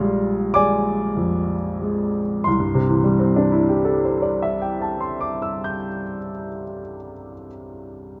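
Close, detailed microphones capture a clear, natural baby grand piano with long sustain, placed up front in a moderate scoring-stage reverb. This serene, luminous impressionist solo piano fragment, cut from a longer piece, drifts in 6/8 at a rubato 29-37 BPM in C major, spanning Bb1 to G6. A Bb9 chord opens as the pace slows through the first 2.5 seconds, then the harmony settles onto C69 at 2.5 s, and the piano rings on to 8.2 s.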